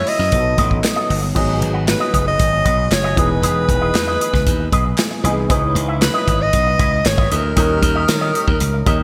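This polished 1980s jazz-funk pop excerpt moves at 116 BPM in a straight 4/4, with a nocturnal, slick mood. A warm, jazz-style alto saxophone carries the melody as a solo voice with vibrato and a touch of delay. A grand piano with long sustain and an ensemble chorus supplies the accompaniment, and a bright, twangy, picked electric guitar plays a clean, compressed riff through an envelope filter and analog chorus. Punchy slap bass sits up front, and the acoustic studio drum kit joins at 0.1 s with a punchy kick, a medium-tuned snare, hi-hat, crash and gated reverb. Crisp, close and very quiet group handclaps come in at 0.8 s. The harmony moves from B7 through G#m7, Emaj7 and C#m9 to D#7, all set in a lush hall reverb with bright 1980s-style digital production.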